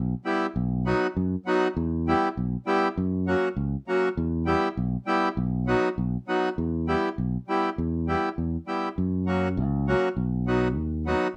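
Fiery yet bittersweet, this short cut from a longer Balkan wedding-band piece moves at 100 BPM in a straight 2/4 in E Hungarian minor, with a reedy, hollow, mid-forward accordion carrying the chords up front from 0.2 seconds over a direct, amped fingered electric bass, both set in a small room's moderate reverb as the harmony cycles through Em, B and F# before shifting into a new section at 9.0 seconds.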